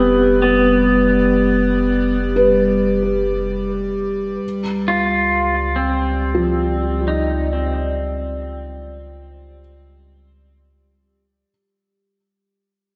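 A dreamy mix soaked in lush hall reverb opens this luminous ambient fragment in free time, fading out from 2.1 seconds as it drifts from Fsus2 to C#. Up front, a clean, compressed electric pedal steel guitar carries the melody with slide and volume swells, played with fingerpicks through analog delay, over a deep, round sine sub bass and a resonant sawtooth drone whose moving overtones are treated with chorus and its own reverb. From 2.4 seconds, a felt-muted upright piano adds mellow, intimate arpeggios, also through analog delay, with its action noise audible.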